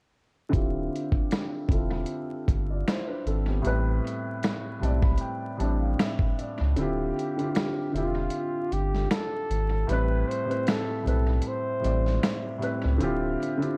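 An echo-heavy mix with vinyl crackle and light reverb frames this melancholic, nostalgic lo-fi hip hop excerpt in D dorian at 77 BPM, swung on the sixteenths. A muted, felt-softened upright piano, colored by cassette tape and a filter sweep, moves between Dm11 and Am9 with a fill from 4.4 s. It sits over a deep, thick saturated sub bass and a gritty, thumpy sampler-style drum kit of kick, snare, hi-hat and finger snaps with analog delay. At 6.8 s the kick drops out and a breathy flugelhorn takes a whispered jazz solo with vibrato and scooped notes, softened by a low-pass filter and analog delay.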